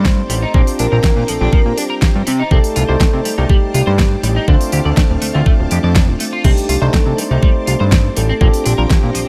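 A straight 4/4 groove at 122 BPM rides on a knocking, up-front electronic kick layered with a pop drum kit's fat snare, crisp hats and crash, while a thick, saturated analog bass with a plucky filter sits heavily underneath in this sensual, sleek nu-disco excerpt in C dorian. A barky tine electric piano with vintage 12-bit grit and sidechain pumping comps through Cm69, Bb69 and Dm7 changes, joined by a slightly broken-up, chorused electric guitar riff and a lush string machine pad that pumps softly in the background. On top, a round, mellow octave-layered synth lead carries the melody with vibrato, chorus and digital delay, all in a dry, close-sounding mix.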